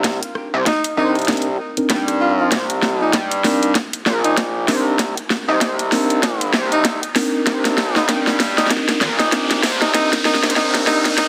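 Overdriven drums with a cracking snare and bright hats open this playful glitch hop excerpt over a tight background kick and an aggressive, saturated sawtooth synth bass up front, before a close-miked tenor saxophone enters at 0.7 seconds with vibrato and scooped notes, mellow electric piano stabs pump from 1.0 seconds, and a riser climbs from 4.0 seconds through a building filter sweep, drum fill and noise sweep, all in a lush hall reverb.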